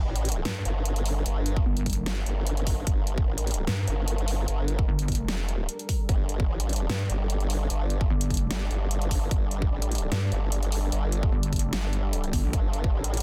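Heavy wobble dubstep in a half-time 4/4 feel, this short excerpt from a longer piece feels menacing and weighty, built over a single Gmadd9 chord. Two wobble basses sit up front: a detuned, formant-filtered pulse-wave bass with chorus and overdrive holds the lowest register from the very start, while a pulsing, distorted pluck bass, thickened with chorus and overdrive, joins at 0.5 seconds. Above them, a lush supersaw pad sustains chords with a slow attack and long release, its bright, detuned unison tone filtered and pumping against the sidechain. A layered electronic drum kit enters almost immediately with hi-hat and a huge snare, and a punchy, up-front electronic kick arrives at 1.6 seconds. The drums carry the character of a small room, set in digital ambience under a dense, heavily limited modern master.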